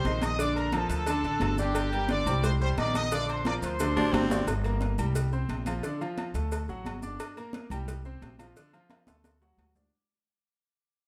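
Salsa at 176 BPM, driving and fiery, with a brilliant, punchy trumpet section leading the melody up front until 4.3 seconds, a bright grand piano with audible action noise, and a woody, thumpy pizzicato upright bass, while ringing high-tuned congas, metal-shell agogo bells and timbales, a tight saturated cowbell and grainy maracas fill the percussion, and a raspy baritone saxophone cuts in briefly at 4.0 seconds before the passage fades out under light reverb.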